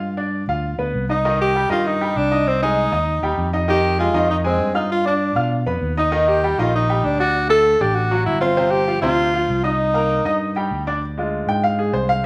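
A wet large-studio reverb of about 1.1 seconds surrounds this short excerpt of a band playing live in one room, giving a driving, passionate salsa cut from a longer piece. At 196 BPM in 4/4 with a straight feel, it sits in C minor, tuned slightly low to A4 = 439 Hz. A bright, brilliant grand piano carries the accompaniment throughout, intimate and up front with audible action noise. Beneath it, a fingered electric bass sounds amped and growly, holding the low end for the full length. A clear tenor saxophone enters at 1.1 seconds with a vibrato-laden, pop-style solo line, up front until 10.7 seconds, moving through chords such as Cm, Fm7, Ebmaj7 and G7sus4. At 11.0 seconds the piano takes a brief solo over a Ddim chord as the section shifts.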